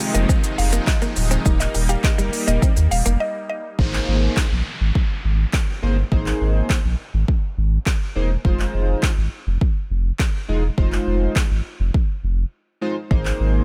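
This carefree, upbeat dance-pop piece at 103 BPM in Ab major opens on a drop: a deep house drum kit with a deep kick, smooth hats, claps and shaker sits up front beside a round sine sub bass, while a glossy, retro chorused polysynth and a detuned supersaw swell pump under sidechain alongside a bright, clean guitar riff in the background and a mellow FM pluck melody with chorus and digital delay. Once the guitar, pluck and swell fall away by 3.8 s, the groove settles onto Abadd9 and Fm7 harmony with the drums, bass and polysynth carrying on. An electronic downlifter sounds from 3.8 s to 8.4 s, in a dry, close-sounding mix.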